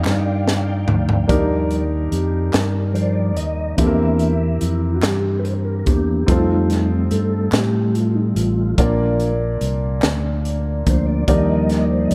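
Darkly produced with light reverb, this slow, hopeful and reverent gospel cut in 6/8 at 48 BPM in Eb major opens with a brief, very quiet bright saxophone section line that ends at 0.5 s as a crisp fusion drum kit with a punchy kick and high-tuned snare plays a fill, then a soft, flute-like tonewheel organ with slow rotary speaker and chorus vibrato takes a solo from 1.3 s over a clear, woody upright piano, a round, amped fingered electric bass, and hollow, very quiet group handclaps that stop at 10.4 s, moving through Ebmaj7, C7/E, F7 and Bb.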